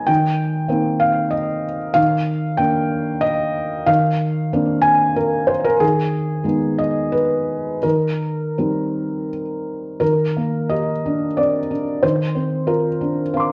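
A felt-muted upright piano, soft and mellow with thick felt, audible action noise and a slapback echo, plays alone up front in this peaceful, intimate neoclassical minimalist excerpt in a rubato 3/4, its gentle chords moving through Ebmaj7 and an Abm/Eb shading while moderate studio reverb and worn cassette tape with warbly pitch drift lend the sound a faded haze.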